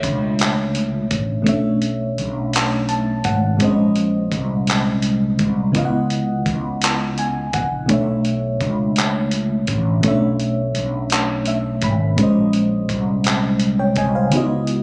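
A slow six-eight R&B groove, sultry and yearning, this excerpt sets a full-bodied FM electric piano up front, with quick, decaying chords over a noise layer and short fills at 2.5, 6.8 and 11.1 seconds, moving through minor eleventh chords. A round, dark fretless bass with analog chorus sits beneath a gritty, compressed sampler-style kit of thumpy kick, hi-hat and handclaps, whose kick drops out at 14.3 seconds. The whole recording has a phone-in-the-room quality with light club reverb.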